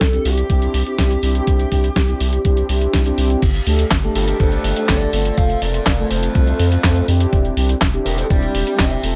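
A dry, gritty hardware recording with a cassette-tape haze and little reverb carries this short cut from a longer italo disco track, melodramatic and danceable at 123 BPM in a straight 4/4. A thumpy electronic kick and a clean 12-bit drum machine with a medium-tuned snare, handclaps, hi-hat and crash, both re-recorded in a small room, join a round, deep, nasal analog bass sitting up front. Mellow, brassy synth stabs with chorus and a filter sweep fill the middle, while a dark, smooth overdriven lead guitar with tape echo sings the melody over chords moving from Cadd9 through Gsus2 and F back to Cadd9/E, with a new section arriving at 3.4 seconds.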